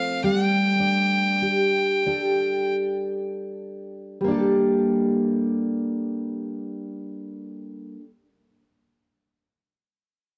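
Set in the dark, moderate reverb of a scoring stage, this haunting, mournful Celtic slow air in G minor drifts in rubato 3/4 at 39-55 BPM, with a nasal, bright solo fiddle carrying the melody up front until 2.7 seconds while a full-bodied jumbo steel-string acoustic guitar, fingerpicked with audible finger squeak, holds the accompaniment from Gsus2 to Gmadd9, slowing through the first 4.2 seconds and playing on until 8.1 seconds in this fragment cut from a longer piece.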